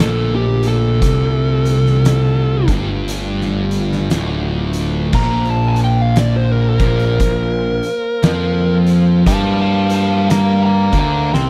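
Stoner and doom metal at a crawling 58 BPM in 4/4, with swung eighths and a heavy, brooding mood, cut from a longer piece. A fuzz lead guitar carries the melody as a solo through the whole clip, its warm, distorted tone touched with slapback echo and sitting high between G4 and C6. Beneath it, two thick fuzz guitars play the riff in the background, one dark in tone, while a growly, overdriven bass with a bright, direct amp sound holds the low end. A soft, flute-like tonewheel organ adds mellow sustained chords in the background, with a percussive second-harmonic attack, chorus vibrato and a slow rotary speaker. The oversized, low-tuned drum kit brings a fat snare, punchy kick, hi-hat and dark crash cymbals in a pumping stone room, everything set in a small room reverb; the harmony moves from D minor to a Bb power chord at 5.1 seconds, and a drum fill arrives at 11.3 seconds.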